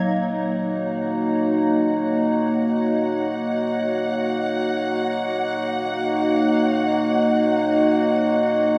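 In free time, this short ambient piece cut from a longer work drifts in Eb minor around a single Ebm7 chord, spacious and reflective. A warbling, nostalgic tape-like pad sits up front with detuned, lo-fi sustained chords softened by chorus, while a distant violin section holds a focused, vibrato-rich Gb5 as it fades in across the full 8.8 seconds. A vast, echoing cathedral reverb, lingering for 5.3 seconds, surrounds the whole sound.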